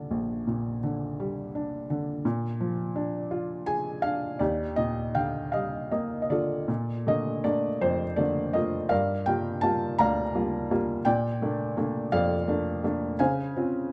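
A lilting 6/8 pulse moves at about 55 dotted-quarter beats per minute, stretched and held back in a free rubato that gives this short classical passage, cut from a longer piece, a calm, unhurried sway. A solo upright piano, its hammers softened by thin felt, carries the whole lyrical line across a range from Bb1 to Bb5, its tone muted and mellow with a short sustain and a faintly vintage character. The harmony opens in Eb major, rocking between Ebmaj7 and Bb7, then settles into Bb major at 6.7 s with Bbmaj7 and Gm7. A closing Dbmaj7 at 13.2 s adds a gentle, unexpected color. Close, detailed microphones place the instrument up front in an intimate, warm space, touched by light reverb.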